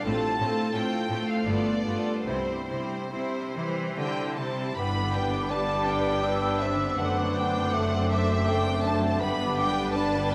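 Classical slow romantic movement in 3/4 at 69-87 BPM with rubato, serene and tender, where a smooth, close violin section sings the melody in C major over a second violin line, intense violas, mellow ringing harp arpeggios, and distant cellos and rich double basses on the bass, until the music moves to G major at 4.8 s and an airy, crisp-attacked flute ensemble and a soft-attacked solo bassoon join, all set in a wet scoring-stage reverb with a faint mains hum.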